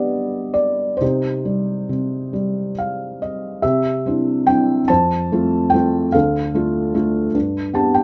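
A felt-muted upright piano plays alone from the start, soft and mellow, with audible action noise and an intimate, up-front presence in light reverb. This short excerpt from a longer classical piece moves in 6/8 with free rubato, its reflective, wistful mood turning from minor to major at 3.6 s. Brief piano fills arrive at 2.3 s and 7.3 s, closing each phrase with a soft, muted tone.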